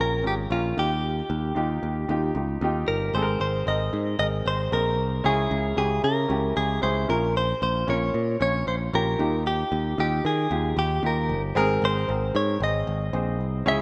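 A straight 4/4 pulse at 114 BPM carries this warm, anthemic piano-driven pop passage in Ab major, cut from a longer piece. A clean, compressed, scooped electric guitar, recorded direct, sings the melody up front. A woody upright piano with short sustain supplies the accompaniment, and a bright, punchy picked electric bass sits forward underneath. All three play through the full 13.8 seconds of a rough home demo mix, softened by moderate plate reverb.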